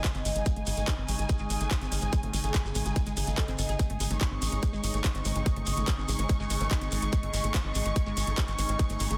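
A dense, heavily limited modern master with light reverb frames this driving, psychedelic trance fragment, cut from a longer piece. Up front, a tight, layered electronic kick sits with a punchy sequencer bass built from sawtooth, square and triangle waves, its dark filter-pluck notes starting at 0.1 s; a garage drum kit adds handclaps and metallic hats, while a grainy, mellow shekere stays in the background. A lush, detuned unison pluck carries the riff with a noise layer, sidechain pumping and digital delay, as a filter sweep runs across the synth arpeggio sound for the full 9.2 seconds. Alongside it, an overtone-sweeping drone holds sustained chords with a wave-folded, resonant tone, moving notch, chorus, built-in reverb and sidechain pumping. A dark, woody studio string section with vibrato and a smooth top adds bowed ensemble texture, also pumping. A nasal, wobbling vowel-sweep bass, compressed and very quiet, traces a second line.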